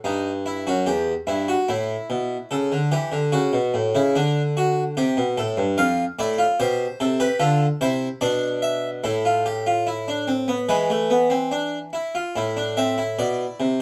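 In a straight, steady four, this short fragment of a baroque-style three-part fugue unfolds alone on an Italian-style harpsichord with two sets of strings, its contemplative, serious lines spanning E2 to F5. The plucked tone is close-miked, dry and full, sitting up front in a moderate studio reverb, as the harmony moves through Em, A7/C#, D, F and Dm to an open E5 before settling on Am at 12.4 seconds.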